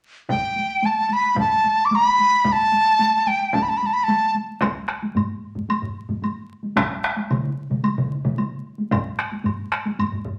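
A wet studio reverb and a vinyl crackle frame this short, powerful slice of Japanese traditional taiko ensemble music, set at 111 BPM in a straight 4/4. A large dizi carries the melody up front between G5 and D6, its bamboo tone airy and bright with a buzzing membrane, soft attacks, lifted highs and expressive vibrato, before falling silent at 4.4 seconds. Beneath it, two taiko ensembles struck with heavy sticks give the passage its ceremonial weight: one sits in a small room, and the other is close and forward. At 4.6 seconds a dry, woody woodblock joins, along with a further taiko group that rings forward in a live room. A vintage, band-limited taiko ensemble, the loudest of the drums, arrives at 6.8 seconds for a brief stretch.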